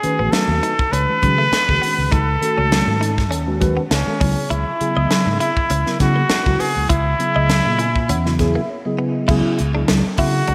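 A muted trumpet carries the melody up front in this driving, slick electric jazz fusion excerpt, its straight-muted tone nasal, breathy and intimate, with soft attacks and a touch of vibrato in a close, whispered jazz-solo voice. Beneath it, a mellow tine electric piano colored by phaser holds the harmony over a B13 and then an E69/C#, adding a fill from 7.5 seconds. A round, dark fingered electric bass and a tight funk drum kit, with a high-tuned snare, tight kick, hi-hat and crash under gated reverb, set a firm 100 BPM groove in 4/4 with a light sixteenth-note swing. In the background, a twangy, compressed clean guitar adds picked stabs through chorus and delay, while hard-handed, thick-skinned congas fill out the percussion. A brief break at 8.7 seconds leads to a move onto Dmaj7/C# at 9.3 seconds, all set in a lush hall reverb with a bright 1980s-style digital sheen.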